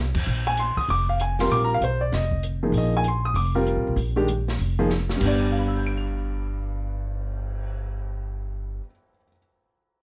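Modal jazz cut from a longer piece, searching and hypnotic in a brisk swung 4/4, with a woody, up-front pizzicato upright bass, a warm baby grand piano voicing a Bb9sus4 before moving to G at 5.2 seconds, and a dark, boomy small-room drum kit whose crash, cymbal swell, hi-hat, kick and snare drop out at 7.6 seconds after a short fill at 4.9 seconds, all in light reverb.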